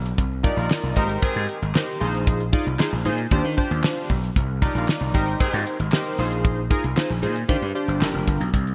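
A straight 4/4 groove at 115 BPM drives this late-night, danceable early-eighties boogie funk in C minor, built on a growly, overdriven slap bass and a dry, damped 70s drum kit with a fat snare and tight kick, while a glossy chorused polysynth with filter sweeps carries the Cm11, Abmaj9, Bb9sus4 and Ebmaj13 changes, a smooth-topped horn section with light vibrato and octave doubling appears briefly at 0.4 and 4.6 seconds, and very quiet, hollow group handclaps sit underneath, in a bright 1980s-style digital production with light studio reverb.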